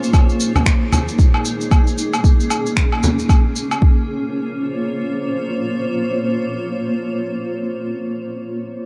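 A swung 16th-note groove of deep, tape-colored electronic kick, layered shaker, woodblock and finger snaps, and a large, up-front frame drum drives this mystical organic downtempo excerpt until 3.9 s, while a very quiet, silvery steel-string zither rings out fingerpicked arpeggios only until 1.8 s, and a cloudy, detuned granular pad with sidechain pumping holds blurred sustained chords alone through 8.1 s in a dark, huge ambient reverb.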